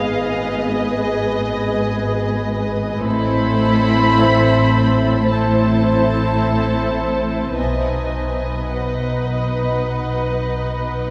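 Heard from further back in a reverberant scoring stage, this short cinematic excerpt has an eerie, ominous cast, its muted strings veiled and shadowy. Con sordino violins carry the melody with light vibrato and a smooth top, while a second violin line sits just beneath. A distant, soft-edged viola section fills the middle, and a lush cello section and close, up-front double basses anchor the low end with bowed, vibrato-laden tones. Behind them, a glassy FM pad holds sustained, ethereal chords with slow attack, ensemble chorus and its own reverb, and a very quiet, mellow grand piano with a vintage colour adds faint texture. Every part plays throughout the 11.1 seconds as the harmony moves from G#m to Am at 3.0 seconds and onto B at 7.6 seconds.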